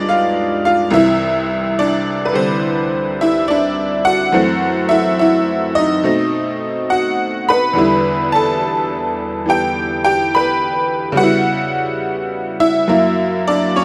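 Solo jazz at a relaxed 70 BPM in 4/4, swinging its eighth notes with a smoky, after-hours mood. A single tack piano carries the whole piece from 0.0 to 13.8 seconds, ranging from C2 up to B5. Its tone is metallic and jangly, with a percussive, vintage bite that sits bright and up front in the mix. The harmony moves through a chain of rich jazz chords, from G7b9 resolving to C, then through F#m7b5 and B7b9 to Em7, before turning toward C#m7b5 and F#7 near the end. A moderate club reverb gives the instrument a sense of a small, intimate room, and the passage is cut from a longer performance.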